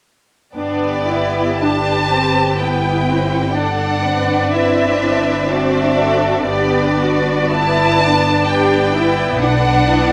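Classical slow romantic movement for string orchestra in G major at 61 BPM in a rubato 3/4, serene and warm, where an up-front violin section carries the soft-attacked, expressive melody with vibrato over a rich, distant second violin line, smooth even violas, a dark double bass section and lush cellos sitting in the background from 1.6 seconds, all bowed in a wet scoring-stage reverb in this brief fragment of a longer piece.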